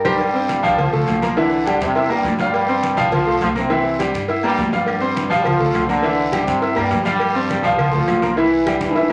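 Joyful and danceable, this brisk salsa excerpt is cut from a longer piece and opens on a band accent and a drum fill before settling into a simple swap between F and C7. A brilliant, tight trombone section carries the melody up front with a light vibrato and a pop-style polish. Beside it, a bright concert grand piano with deep bass and short sustain plays the accompaniment, while a woody, dark upright bass with gut strings thumps underneath. The percussion fills out the groove: thick-skinned congas struck with hard hands, ringing metal-shell timbales and agogo bells set at a distance, raspy guiro, very quiet low-tuned cowbell and bongos, and close claves that tap once at the start and return from 4.9 seconds. A wet large-studio reverb surrounds the band, and another drum fill closes the passage at 8.8 seconds.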